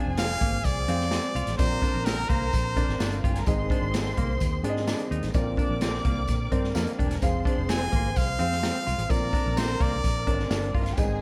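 A brilliant, forceful trumpet with slapback echo sits up front in this danceable, uptempo 1960s-style soul excerpt at 128 BPM in Bb mixolydian, carrying the melody from 0.2 to 3.2 s and returning at 7.7 s. Beneath it, a distant, roomy big-band drum kit with a high-tuned snare and boomy kick pairs with a dark, foam-muted, round fingered electric bass. Lush bowed violins play a second line over a woody upright piano, a clean hollow-body guitar riff with spring reverb, a very quiet tonewheel organ with key click and slow rotary speaker, ringing high-tuned congas and a jingly tambourine.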